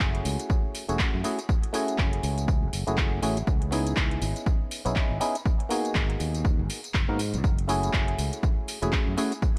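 Deep house with a smooth, moody swing, this brief cut from a longer piece rides a punchy, tape-warm electronic kick up front alongside a layered house kit of handclaps, tambourine and metallic hats in a small room. A growly, bright fingered electric bass pumps under sidechain, while a hollow, percussive organ stab with a fast attack and a mellow, wave-folded edge sits forward, coloured by chorus, phaser, analog delay and pumping. The harmony moves through F#m9, C#m9 and G#m9 before returning to F#m9 at 7.4 seconds.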